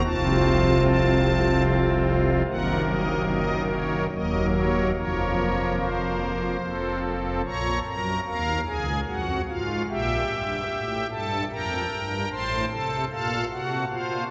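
Solemn and grave, this short classical excerpt is a chorale-style piece for solo pipe organ in a slow triple metre, moving with a free, rubato feel. The organ plays alone throughout its roughly 14 seconds, drawing on soft, shimmering string and celeste stops in a romantic voicing that sits up front, reaching from deep notes in the low register to high treble. The harmony moves through major, minor and suspended chords before settling into richer, extended colours in the second half, which begins at 7.4 seconds. A cathedral's long, enveloping reverb surrounds the instrument, placing the listener further back in the vast space so each chord hangs in the air. Cut from a longer piece, it reaches its final chord at 12.3 seconds.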